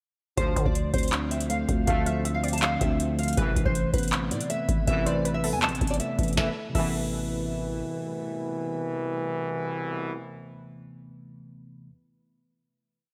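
A booming analog drum machine sits up front in this menacing, eerie trap piece, its deep kick, tonal snare and metallic hats driving a half-time beat with fast hi-hat rolls, while a growling 808-style bass follows the kick with long, buzzy sub notes and pitch slides. Over this a fingerpicked nylon-string guitar loops a classical-style melody, complete with finger squeak and softened by analog chorus and delay. A mellow tine electric piano arpeggiates in eighths, short bright brass stabs punctuate the hook, a faint glassy FM pad holds ethereal chords, and a dusty, warbly pluck adds a sparse background counter-melody from 2.1 s, all set in a lush hall with a bright 1980s-style digital sheen before the hook gives way to a final chord at 6.4 s.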